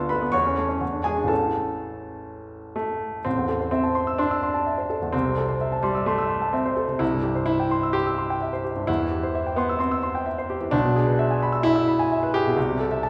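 Set in a wet recital hall with a 1.4-second reverb and heard from further back in the room, a clear, intimate grand piano carries audible action noise and a short, natural sustain, sitting up front in its own sound. This heroic, brilliant virtuoso piano study, cut from a longer piece, moves with rubato at 128 BPM in 4/4, tuned to A4 = 437 Hz and spanning A1 to E6 across the solo's 13.1 seconds. It opens in A major over A/E, E7 and A chords, then turns to A minor at 3.3 seconds, passing through Am/C, C, C/E and E7/B before settling again on Am/C.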